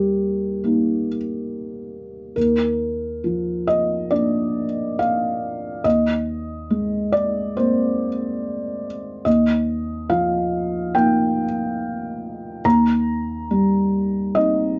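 A felt-muted upright piano opens alone and carries the whole 14.8-second fragment, its thick felt giving each note a soft, dark tone, with the mechanical noise of the action audible and close. This is peaceful, intimate neoclassical minimalism in Eb major, moving at a rubato 70 BPM in 4/4, tuned to A4 = 442 Hz. The harmony rests on an Eb pedal throughout, moving from Eb to Bb/Eb, then Abadd9/Eb, Ebadd9 and Cm7/Eb, and the part spans Eb2 to Bb5. The piano sits up front in a light reverb, and the sound is natural, with nothing above 7.6 kHz, so the tone stays mellow. Cut from a longer piece, it plays as a single unbroken passage.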